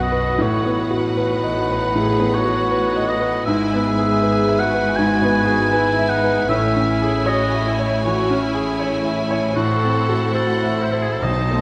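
An up-front concert grand piano with a clear tone, deep bass and long sustain carries the melody in this passionate, lush classical passage in E major, moving at a rubato 78 BPM and cut from a longer piece. High violins also sing the melody with smooth vibrato, while a distant, roomy oboe and a background violin section trace second lines over rich violas, bowed cellos and a double bass section sliding with soft-attack portamento. The strings and piano sit in moderate concert hall reverb, and a very quiet timpani stroke, round under soft mallets, enters at 11.2 seconds.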